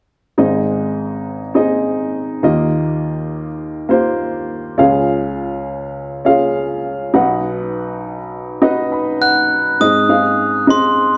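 This pop excerpt moves at 102 BPM in a straight 4/4 and carries a warm, hopeful mood. A dark upright piano sets the accompaniment from 0.4 seconds, its mellow, woody and boxy tone sitting up front as the chords move from Ab through Ebadd9, Db and B. The piano plays a fill at 8.6 seconds, leading into a new section where the harmony returns to Ab. At 9.2 seconds a glockenspiel struck with hard plastic mallets takes the melody, its metallic, bell-like ring sounding bright and sparkling, close and full, with a touch of plate reverb. The whole performance sits in a moderate large-studio space, and the excerpt closes at 11.2 seconds as the piano and glockenspiel end together.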